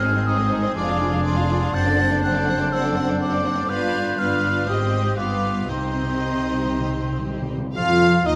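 A hollow, mellow concert flute sits high above this dramatic, stormy orchestral passage, cut from a longer romantic movement and played with a rubato feel. Beneath it, a violin section carries the melody with a lush, vibrato-rich bowed tone and a smooth top, while a clear solo oboe, a bright clarinet in the background and a second, richer violin section weave supporting lines. A distant viola section fills in the accompaniment until 7.5 seconds, and a very quiet, roomy French horn section holds sustained chords. Cellos, played with expressive portamento, and double basses anchor the bass with a warm, even sound. Timpani on calf heads enter in the background for a fill from 5.7 to 7.7 seconds as the harmony settles on C minor, and a wet scoring stage reverb wraps the ensemble in a 1.7-second tail.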